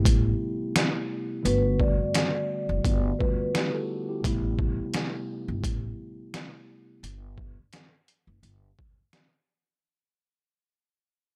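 A dry, close-sounding boom-bap hip-hop excerpt at 86 BPM, tough yet reflective, with a 16th-note swing and a gradual fade across its length. Up front, a muffled, pitched-down sampler-style kit with a thumpy kick, a medium-tuned snare, hi-hat and overdriven grit drives the groove, while a woody pizzicato upright bass holds the low end and a clean, mellow tine electric piano comps on Am7 and Gmaj7 chords in A dorian. A dark, ringing vibraphone with soft mallets and motor vibrato adds a brief delayed melody from 1.4 to 3.7 seconds, and after the chords drop out at 7.0 seconds the drums carry a short break, joined by the upright bass until about 8.7 seconds.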